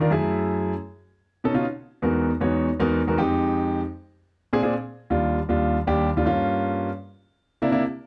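A straight 4/4 pulse at 156 BPM drives this sophisticated, fiery jazz fragment, cut from a longer piece, in which a solo concert grand piano plays from 0.0 to 7.8 seconds, tuned to A4 = 441 Hz and spanning Eb2 to Db5. Its intimate, vintage tone has deep bass, a smooth surface and audible action noise, heard up front through close, detailed microphones with light reverb. The harmony moves quickly through chords such as Gbm7, B7, Emaj9#11, Fm7, Bb7 and Ebmaj7 before reaching Gm7b5 and C7.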